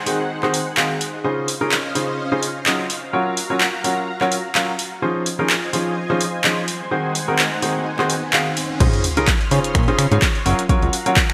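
A clear, up-front grand piano riff with delay and sidechain pumping drives this uplifting, feel-good piano house clip at 127 BPM in Db major, set over a silky, chorused analog string pad and a punchy, overdriven analog drum machine of crash, finger snaps, handclaps and hi-hat, all with a lightly swung 16th-note feel. A riser and sub drop in the background build from 6.7 seconds into the drop at 8.8 seconds, where a fat, detuned sawtooth bass and an overdriven electronic kick drum arrive, the chords moving through Dbmaj9 and Gbmaj7. The bright 1980s-style digital production sits in a lush hall reverb, cut from a longer piece.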